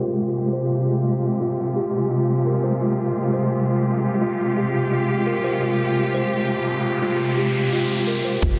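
Half-time drum and bass with a cinematic, spacious mood, built on a single minor add-nine chord that holds through this short passage cut from a longer piece. Up front, a rich, smooth cello section plays sustained chords with vibrato, its bowed tone breathing with a sidechain pump. Beneath it, a woody, hollow-sounding kalimba picks out ringing arpeggios, roughened by vintage sampler grit and sent through delay while a filter sweeps across it. A grainy, flickering texture sits in the background, soaked in its own reverb, as an electronic riser enters at 6.4 seconds. Only at 8.4 seconds do the drums arrive, with a hard-clipped electronic kick up front, metallic hats and toms from a kit re-recorded in a small room, and a deep, decaying sine 808 bass, all landing just as the fragment ends.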